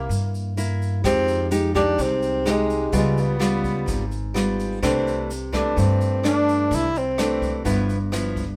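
A breathy tenor saxophone opens this relaxed, romantic bossa nova excerpt at 127 BPM, its subtone melody sung with light vibrato and scooped notes up front beside a fingerpicked nylon-string guitar whose fresh strings carry a finger squeak, while a woody pizzicato upright bass anchors the low end. A grainy, distant tube shaker enters at 0.1 seconds, and a brushed jazz kit with a boomy kick, hi-hat and rim click joins in the background at 1.0 seconds. The band plays together in one room with moderate reverb, moving through jazzy C major harmony from Fm9 and Db7#11 to C69 before the saxophone drops out at 7.7 seconds.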